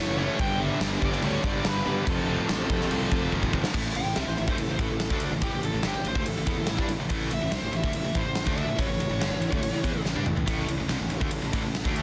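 A huge arena drum kit sits up front and enters at 0.4 s, with a punchy kick, a medium-tuned snare, bright cymbals and toms in a pumping hall sound, driving this energetic, powerful hard rock piece at 142 BPM in a straight 4/4. Beneath it, a sludgy overdriven guitar and a heavy high-gain guitar grind out riffs in the background. They are joined by a growly fuzz-laden fingered bass and, until 3.7 s, a very quiet lo-fi, double-tracked garage guitar. A dark, distorted bluesy lead guitar carries the melody with digital delay, moving into a solo at 3.7 s as the harmony shifts from G and F to an A5 power chord, and it falls silent at 10.0 s. A very quiet, silky analog string pad with a slow attack and ensemble chorus adds detuned sawtooth chords behind the band in two spots. The mix is dry, dense and heavily limited in a modern style, and the clip is cut from a longer piece.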